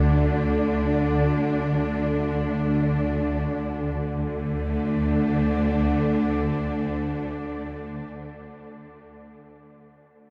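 A close, intimate cello section bows sustained chords sul tasto with light vibrato, in a warm, soft-attacked tone that holds from the start to 8.1 s in this dark, desolate ambient drone fragment of a longer piece, played in free time and tuned to A4 = 439 Hz. Beneath it, a swarming, detuned granular drone sits up front, tense and evolving, until 7.7 s. A barely audible flickering, grainy layer drifts underneath until 4.0 s, and a huge, wet reverb lends the whole a cavernous, bleak space.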